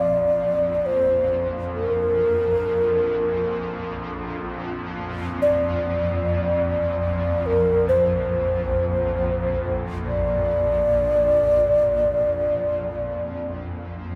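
A breathy low xiao carries the melody in this peaceful, spacious stretch of free-time world meditation music in Bb major pentatonic, its end-blown bamboo tone close-miked and up front, with soft attacks, vibrato and a diffuse ambient delay. Beneath it a shimmering ambient pad holds a low drone with an ethereal, warbling, vintage character, octave-up shimmer and a granular, chorused glow that lingers to 14.2 s after the xiao falls silent at 13.5 s. A lush hall reverb bathes this short section, cut from a longer piece, in a wet, airy space.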